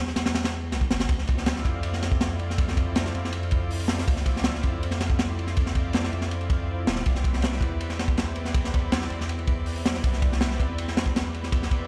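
A crunchy, gritty breakbeat kit sits up front in this dark, atmospheric drum and bass excerpt at 161 BPM in D dorian, its high-tuned snare, tight kick, hi-hat and dark ride cymbal carrying a saturated, rolled-off sound, while a deep, thick sub bass holds down the low end from the start. At 1.2 seconds a lush, warbling sawtooth pad with chorus enters on sustained chords moving from Dm9 to Cmaj9 at 7.1 seconds, its detuned unison giving a vintage shimmer. The whole excerpt sounds as if played on a big sound system in a bare room, soaked in large studio reverb.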